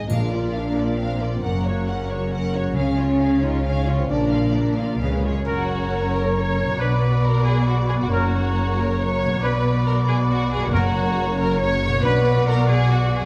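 Adventurous and heroic, this cinematic film-score excerpt moves at 136 BPM in 3/4, with a warm violin section carrying the melody over a rich, distant second violin line, a dark viola section with expressive portamento, a ringing harp's arpeggios, and a bowed bass of cellos and double basses, while a mellow French horn section holds sustained chords in the background. Timpani and a soft triangle mark the opening, the timpani returning at 10.7 seconds. At 5.5 seconds the music shifts from Bb and Gb chords toward an F# and Bm pattern, where a clear oboe and a pure, hollow silver flute add second lines and a bright trumpet section punctuates with stabs, all set in a wet recital-hall reverb.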